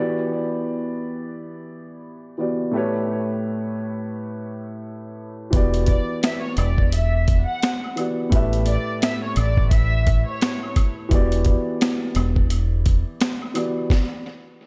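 A gritty, pitched-down boom-bap drum kit sits up front in this moody, tough hip-hop excerpt, its thumpy kick and high-tuned snare sounding compressed and sampler-style, with hi-hat riding a swung 86 BPM groove in E dorian. A dark, mellow baby grand piano, filtered and soaked in cassette tape grain and tape echo, plays alone at first, sustaining long chords that move between Em7 and A7. At 5.5 seconds the drums arrive together with a round, punchy fingered electric bass that plays low notes beneath the Em7 and A5 harmony, while an acoustic egg shaker and woodblock add faint tape-echoed accents in the background. From 5.9 seconds a distant, reedy violin section carries a short bowed melody with light vibrato and a gut-string, period-style tone, filtered and echoed. The small room ambience and heavy echo give the mix a close, smoky atmosphere.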